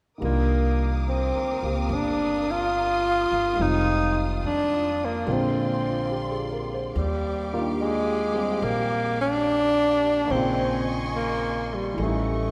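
Swung eighth notes at a slow 71 BPM in 4/4 carry this melancholic, smoky jazz ballad in C minor, moving from Cm11 through Fm7 and Bb9 to Ebmaj9 at 6.9 seconds before reaching A7#11 at 12.0 seconds. Up front, a breathy tenor saxophone sings the melody with subtone, vibrato and scooped notes, over a woody pizzicato upright bass, an intimate concert grand piano with audible action noise, and a lush bowed string section holding sustained chords with portamento. A wet church reverb gives the excerpt the spacious air of a church or concert hall.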